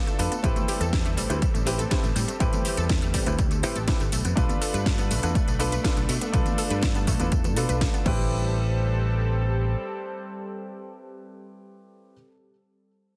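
Dense, heavily limited modern mastering with light digital reverb frames this cosmic, groovy nu-disco clip, cut from a longer piece. A punchy, overdriven electronic kick leads the mix, joined by a layered house kit with a cracking snare, metallic hi-hats, crash cymbal and tambourine, plus very quiet, high-tuned congas played with hard hands. A bright, growly picked electric bass carries the low end, while a grand piano plays accompaniment with sidechain pumping and delay over a thick, detuned sawtooth pad that sustains chords through chorus. A warbling, vintage unison pluck with a noise layer sits in the background, spinning delayed arpeggios as the harmony moves from Am7 to Bm7b5 and back. The drums and congas stop at 8.2 seconds and the pluck at 8.5 seconds, leaving piano, pad and bass, which ends at 9.7 seconds, to carry the final stretch.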